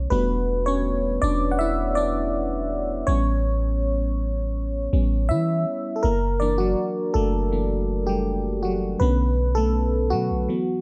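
A glassy, bell-like FM electric piano with a shimmer of chorus takes the lead across this moody, late-night contemporary R&B excerpt at 81 BPM in E dorian, moving through Em11, A9, F#7alt and Bm9 over a deep, boomy, sine-toned 808-style bass that sits up front, all in a light reverb until the bass drops out at 10.5 seconds and the piano rings on alone to 10.8.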